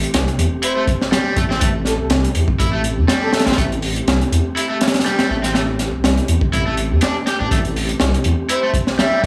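A crunchy, saturated breakbeat kit with a punchy kick and high-tuned snare drives a raw, funky breakbeat groove at 122 BPM in A minor, swung slightly on the 16ths, while a deep, rumbling detuned saw bass sits up front on an Am7 chord and a very quiet electronic sub drop marks the opening impact. A bright, overdriven electric guitar riff with delay enters at 0.6 s alongside a breathy, flute-like synth lead with chorus, vibrato, delay and an old-record tint, which drops out at 3.4 s and returns at 8.5 s. Underneath, a soft, mellow tonewheel organ with key click and fast rotary speaker holds sustained chords in the background, pumping against the beat, all within a small-room ambience in this excerpt from a longer piece.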